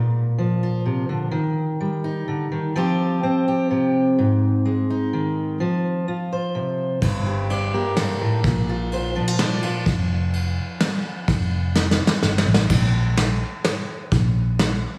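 Uplifting and nostalgic, this indie folk excerpt moves at 126 BPM in a straight 3/4 feel in Bb major, its arrangement building as it goes. A fingerpicked steel-string acoustic guitar opens alone, up front with a warm, auditorium-like body, carrying the accompaniment through chords such as Bbadd9, Eb, Fsus2 and Ab5. At 7.0 seconds a hollow-body short-scale electric bass, played with the fingers, joins with a dark, round, amped tone in its low register, alongside a vintage drum kit played with brushes. The drums sit up front with a small-room character, smooth dark cymbals, a medium-tuned snare, a tight kick and a rolled-off top, and they add a fill from 11.8 to 12.7 seconds. The guitar drops out at 11.3 seconds, leaving bass and drums to carry the final bars. A lush hall reverb and a big arena-style ambience give the whole piece a spacious setting.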